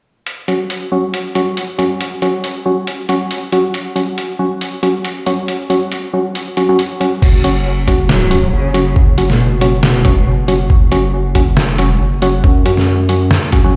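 Meditative and heavy, this deep dubstep excerpt at 138 BPM moves with a swung half-time feel as muffled, pitched-down sampler drums with filtered hats, snare and crash sit under hollow, chorused organ stabs with dub echo from 0.5 seconds, before a thick saturated sub bass and a thumpy compressed kick arrive at 7.2 seconds and a dark, bowed cello with vibrato and portamento sings briefly through dub echo from 8.1 seconds, all washed in a lush hall reverb and the stony ring of a bare room.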